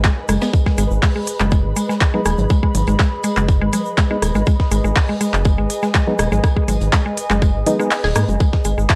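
Minimal techno at 122 BPM in G# minor, this short cut from a longer piece feels sparse and quirky, sitting on a single G# minor chord. A tight, up-front electronic kick anchors the groove alongside a rubbery, bouncy square bass that pumps with sidechain movement and a dark, saturated, wave-folded tone. A woody, round, mallet-like synth pluck carries the riff, bright and short-decaying, treated with chorus, phaser, analog delay and sidechain pumping. Clicky hats and handclaps from a minimal click kit mix with electronic rim clicks and congas from 0.3 seconds, while a high-tuned, mid-forward funk kit with hi-hat, snare and tambourine and a very quiet, grainy tube shaker sit in the background. From 2.1 seconds a nasal, hollow organ stab with a moving notch adds chorus-and-delay accents, and overhead a warbling, nostalgic tape-like pad and a flickering granular texture breathe with sidechain pumping. 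The kick drops out briefly at 7.9 seconds, and the whole piece has a dry, gritty, cassette-tape character in a small room.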